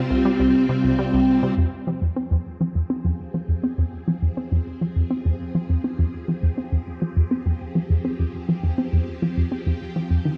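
Steeped in a wet concert-hall reverb, this cosmic, expansive stretch of sequencer-driven space music puts a juicy, squelchy resonant blip pluck riff up front, coloured by chorus and delay, over swirling, warbling sustained chords from a vintage phased string machine that fades in from 1.6 seconds onward.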